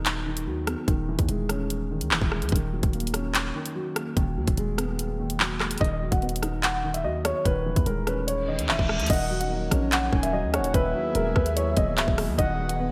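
A half-time drill pulse at 146 BPM in Eb phrygian drives this tense, ominous hip hop excerpt, where an up-front, hard-clipped electronic kit with bright hi-hats, handclaps, rim clicks, kick and crash rides over a punchy, heavy 808-style bass and a dark, boxy concert grand piano softened by lush chorus and a low-pass filter; a mellow baby grand with audible action noise carries the melody from 5.8 s, a reverse cymbal leads into 9.1 s, and there a soft, flute-like synth lead with vibrato and delay and an airy, detuned pad in the background join, the whole set in a moderate hall reverb with bright 1980s-style digital production.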